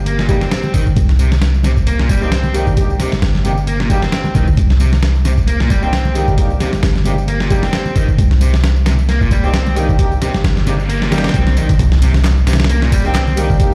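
A swung 133 BPM breakbeat groove in C minor drives this funky, gritty cut from a longer piece: a thumpy, compressed sampler-style kit sits up front, overdriven machine handclaps, ride and tambourine stay in the background, very quiet damped congas add color, a deep, boomy 808-style bass anchors the low end, a bright fuzz guitar riff runs through tape echo and a low-pass filter, smooth brass-section stabs carry 12-bit sampler grit, and a noise sweep arrives at 10.6 seconds before an impact marks the drop at 11.8 seconds, the whole mix ringing in stone-room reverb as if blasted over a big sound system in a bare space.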